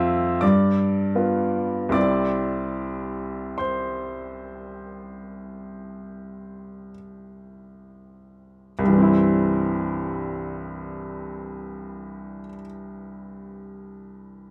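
A clear, intimate baby grand piano sits up front in this tender, nostalgic romantic nocturne, its long sustain and audible action noise giving the solo playing a natural, close-up presence as it ranges from C2 to E6. In C major and 4/4, the rubato tempo drifts between 31 and 46 BPM, slowing through the first 8.8 seconds as a G7 chord resolves to C at 1.9 seconds, before a new section begins. Light reverb and a dark production frame this brief passage, which is cut from a longer piece.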